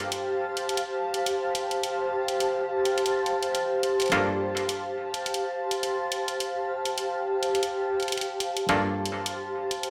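A swung sixteenth-note groove at 105 BPM in 4/4 drives this funky, gritty glitch hop excerpt in G minor, resting on a single Gm7 chord for its full 9.9 seconds. An electronic hi-hat, layered and up front, keeps time throughout. A muted clav plays stabs between G2 and A4, its tone percussive, stringy and twangy, run clean through a combo amp and trailed by a digital delay. Above it, a granular cloud pad sustains between G4 and A5 with a slow attack and long release, its blurred, evolving texture bathed in built-in reverb. The mix sits in a wet studio reverb and sounds as if played on a big sound system in a bare stone room, lending the fragment a hard, echoing space.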